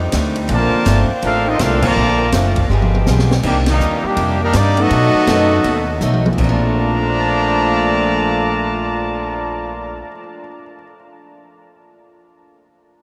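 A smooth, vibrato-tinged saxophone section holds sustained chords in the background over a woody, up-front pizzicato upright bass, joined almost at once by a very quiet, boxy picked archtop guitar with finger squeak and an open jazz drum kit with dark cymbals, a high-tuned snare and a boomy kick. At 0.5 seconds a brilliant trumpet section with light vibrato takes the melody up front while a tight, close-miked trombone section carries a second line, both trailed by diffuse ambient delay; band accents and drum fills punctuate the phrases, and at 3.4 seconds the saxophones give way to a very quiet, intimate grand piano with audible action noise. This energetic, swinging big band jazz passage, cut from a longer piece, sits in a dreamy mix soaked in huge reverb.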